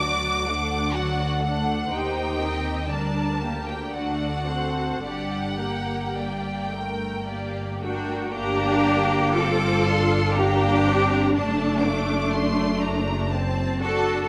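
A moderate concert-hall reverb gives this excerpt from a slow romantic movement for string orchestra an airy, spacious sound. The mood is elegiac and melancholic, moving in an unhurried triple metre with a freely breathing rubato feel. The full ensemble plays throughout, with a clear, focused violin section carrying the melody high in its register while a second, more distant and intense violin line moves beneath it. Violas supply a smooth, even accompaniment, and a close cello section and up-front double basses share the bass line with a rich, bowed depth. Every section sings with vibrato, giving the texture a lush, symphonic fullness as the phrase returns after 8.3 seconds. The harmony settles onto its home minor chord at 5.0 seconds and turns toward a dominant seventh near 11.4 seconds.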